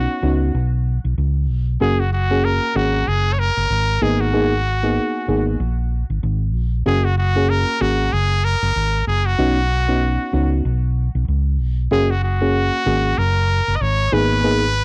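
A lilting 95 BPM afrobeats groove with a swung 16th-note feel carries this sunny, romantic F# major excerpt, where a brilliant, up-front trumpet with light vibrato sings the melody through analog delay over a mellow, warbling FM electric piano washed in chorus and a round, punchy hollow-body bass, all captured dry and gritty on cassette tape as the chords move through Badd9, F#add9 and G#madd9.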